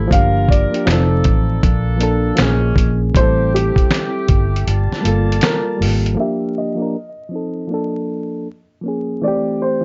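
Hazy and nostalgic, this lo-fi hip hop fragment at 79 BPM with a swung 4/4 groove sets a mellow, woody upright piano melody softened by tape echo over a reedy, bright electric piano, a tight woodwind section holding smooth chords with light vibrato, a round, foam-muted electric bass and a gritty sampler-style drum kit of finger snaps, hi-hat, snare and thumpy kick, all under vinyl crackle and light reverb, until the kick drops out at 4.7 seconds and the drums, bass and woodwinds fall away by 6.2 seconds, leaving the two pianos over the same jazzy chord cycle through a filter sweep.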